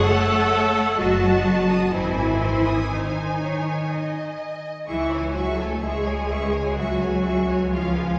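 An intense, up-front viola section carries the accompaniment in this melancholic, solemn fragment of a slow romantic movement for string orchestra, moving in a rubato 3/4 at around 60-67 BPM in C# minor. Above it, a clear, distant first violin section sings the melody with vibrato while a smooth, even second violin section shapes a lush second line, and a focused cello section holds the bass, joined at 1.0 s by a rich, light-vibrato double bass section. The harmony passes from F#m7 through a diminished chord and G# to settle on C#m at 4.9 s, all heard from further back in a reverberant concert hall with some lossy compression artefacts.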